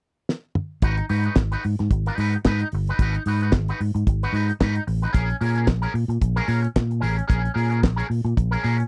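A swung 16th-note disco groove at 111 BPM in 4/4 sets a driving, sultry mood in G# minor, with a drum fill on a damped 70s kit (fat snare, tight kick, hi-hat, toms and handclaps) starting at 0.3 s, before a round, amped fingered electric bass and a bright, twangy, clean, picked electric guitar with an envelope filter and analog chorus enter at 0.8 s over G#m7, moving to A#m7 at 5.1 s, in a dry, close 1970s-style studio sound.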